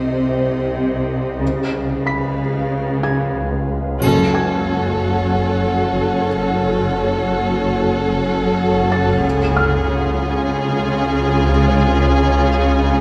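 A close, bowed violin section carries a narrow, expressive vibrato melody in this tense, mysterious stretch of suspense film score, which is cut from a longer piece. It unfolds in free time, tuned to A4 = 438 Hz. Under it, an ethereal, airy synth pad with ensemble chorus holds sustained chords, while a swarming, detuned granular drone sits low in the background. A distant chamber cello section provides the bass, and a soft, felt-muted upright piano adds a dark, intimate texture high above, its action noise audible. A rich double bass section joins at 1.4 seconds. At 4.0 seconds the harmony settles into F# harmonic minor: the violins and a lush, distant symphonic viola section enter together with a brief band accent, and a dry triangle sounds quietly in the background. The chords move from Cm and Db7 to F#m and finally C#, all set in a moderate scoring-stage reverb.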